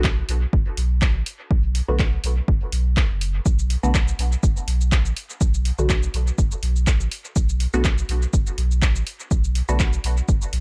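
Steeped in digital ambience, this cavernous, deep dub techno passage, cut from a longer piece, moves at 123 BPM in B minor with a light 16th-note swing: a punchy, tape-warm electronic kick and a round, sustained sine sub bass sit up front, while an analog drum machine's cabasa, handclaps and hi-hat trail dub echo, and muted, detuned sawtooth-and-pulse chord stabs with a filtered pluck run through phaser, dub echo and the same sidechain pumping that breathes in the bass.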